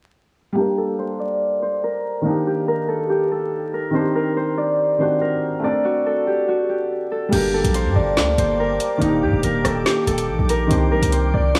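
Over a half-time feel at 142 BPM in 4/4, this dark, ominous drill cut, pulled from a longer piece in G minor and tuned to A4 = 442 Hz, opens at 0.5 seconds with a soft, felt-muted upright piano playing mellow, intimate accompaniment through a low-pass filter. A thumb-plucked Celtic harp carries the melody up front, its acoustic, ringing tone filtered and touched by tape echo, while a filter sweep runs across the opening passage over Gm, Ebmaj7, Cmadd9 and D5. At 7.3 seconds the track drops in full: a hard-hitting 808-style bass lands punchy and heavy, a sine body with a noise layer and a fast, decaying attack sitting prominently in the mix. An electronic drill kit arrives at the same moment with a woody snare, metallic hi-hats, rim clicks and crash cymbal, and a glassy, ethereal FM pad spreads sustained chords with slow attack, long release, ensemble chorus and its own built-in reverb over Gmadd9, Ebmaj7 and Cmadd9 until 11.6 seconds. 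Light digital ambience, vinyl crackle and a studio room tone wrap the whole production in a dusty, shadowy atmosphere.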